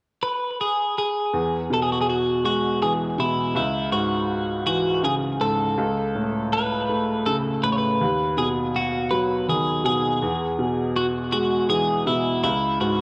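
Heartfelt and swaying, this short pop excerpt moves at 54 BPM in a straight 6/8, cut from a longer piece in E major. A bright, twangy twelve-string electric guitar carries the melody from 0.2 seconds, its compressed, picked tone colored by cassette tape and a tape echo. At 1.3 seconds a clear upright piano joins with a woody, open accompaniment in its lower register, its long sustain also touched by cassette tape. Both parts sit up front while the harmony moves from E through C#m, Aadd9/C#, B/D#, and back to E and C#m. A moderate spring reverb and small room ambience frame the home cassette recording, giving it an intimate, lived-in feel.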